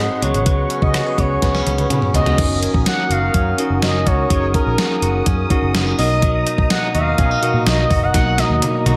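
1980s-style pop with a dramatic, moody air, this excerpt sets a smooth, expressive sawtooth synth lead with chorus, vibrato and a diffuse ambient delay over bell-like tine electric piano, a detuned analog pad and a twangy, compressed clean guitar riff tucked in the background. A dark, round, foam-muted picked bass anchors the harmony, and from 0.2 s an up-front, overdriven digital drum machine adds a thumpy kick and gated-reverb snare, with fills at 1.4 and 8.1 seconds. The whole mix is soaked in a dreamy plate reverb as the chords move from Db7sus4 through Gb6 to Bmaj7.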